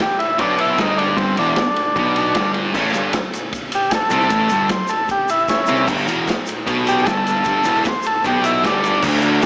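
A straight, rowdy 4/4 groove comes from a raw garage drum kit with a punchy kick, medium-tuned snare, ride and crash. A double-tracked, up-front fuzz guitar riff and a round, overdriven fuzz bass join at 0.4 seconds, moving between G5 and A chords. Over them a buzzy, vintage combo organ with light vibrato takes the melody as a solo in this cut from a longer garage rock piece, a grainy egg shaker enters in the background at 2.7 seconds, and the whole has a small speaker sound with moderate spring reverb and small room ambience.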